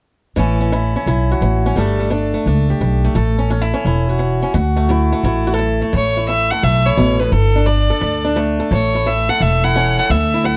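A boxy, bright picked acoustic guitar in swing style and a woody pizzicato upright bass open this nostalgic, sunny honky-tonk excerpt at 0.4 s, swinging at 173 BPM in A mixolydian over chords moving between A, Gsus2 and Dadd9. At 5.9 s a single clear fiddle takes the melody up front, its biting tone carrying an airy bow and light vibrato with real intensity. The classic country sound sits dark and warm, touched with light reverb.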